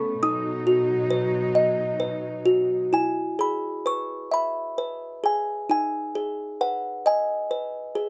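Innocent and tender, this brief lullaby for children drifts in a lilting 6/8 with a free, rubato feel, and it is cut from a longer piece. A delicate music box carries the melody, its plucked, tinkling notes bright and slightly out of tune, sitting up front with the character of a small box. Beneath it, a warm, intimate chamber string section holds soft, bowed sustained chords with vibrato and a hushed sul tasto tone. The strings play only the opening stretch and stop at 2.9 seconds, where the music box carries on alone into a second section that runs to 8.1 seconds. The chords move from B to E and then to G#m, and light reverb surrounds close, detailed microphones that catch every glint of the mechanism.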